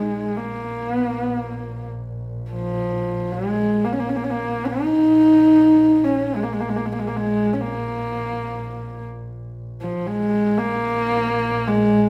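Mongolian folk fragment, windswept and solemn, in which a dark, husky horsehead fiddle carries the melody up front with vibrato, portamento and an airy, intimate bow over a warm bowed double bass drone that sits far lower in the mix, both bathed in the wet reverb of a recital hall.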